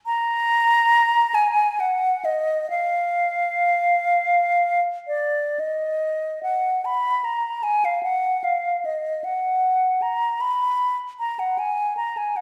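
A church or concert hall gives this recording its lush, reverberant character, with a wet bloom hanging behind each phrase. It is a meditative, yearning passage of classical music for unaccompanied flute, lifted from a longer piece. The silver concert flute sits up front, its tone mellow and hollow with a pure metallic sheen, crisp attacks and vibrato. Moving freely in 6/8 with expressive rubato, the line stays in the instrument's upper-middle register. One phrase runs from the opening to about 5.6 seconds, and a second unfolds from there until the flute falls silent at 12.4 seconds.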